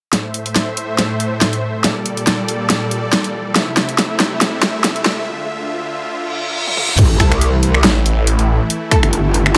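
Heavy, aggressive half-time wobble dubstep at 140 BPM in A phrygian opens with lush, detuned supersaw chords pumping against a dubstep kit of huge snare, bright hats, toms, finger snaps and crash, building through a filter sweep, drum fills and very quiet risers, reverse cymbal and sub drop to a break at 5.3 s before the drop at 7.0 s unleashes a punchy layered kick and a metallic, saturated FM wobble bass with chorus, joined by a bold, phaser-washed orchestra-hit-like stab sitting in the background from 7.2 s and a snarling distorted saw bass at 7.8 s, all in a lightly reverberant mix.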